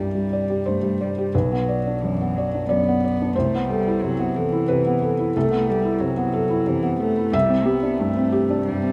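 Neoclassical piano and strings in a tender, intimate mood, this brief passage sways in an unhurried three-beat metre with a free, rubato feel, its sus2 and added-ninth harmonies lending a gentle, unresolved glow. A felt-muted upright piano sits up front as the accompaniment, its mellow, vintage tone carrying audible action noise. Behind it, a single cello plays a close second line, bowed sul tasto with an airy bow, a soft attack and light vibrato. Both instruments play throughout the 8.9 seconds, set in the moderate reverb of a large studio.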